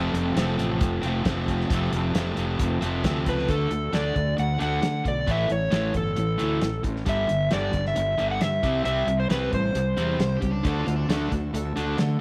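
The recording has a moderate plate reverb and a small-room ambience. This driving, confident classic rock section moves at 134 BPM in a straight 4/4. Two overdriven semi-hollow guitars play the riff throughout, one warm and up front, the other brighter and set behind it. They sit over a growly, fuzzed-out fingered bass and a dry 70s drum kit with a fat snare, tight kick and hi-hat. A very quiet, boxy acoustic archtop picks an accompaniment at the opening, then returns at 10.6 seconds. At 3.3 seconds a dark, overdriven slide guitar takes the melody up front as the chords move through D, A, G5 and C, and a smooth lead guitar adds a brief second line in the background from 10.2 seconds as the progression arrives back on D.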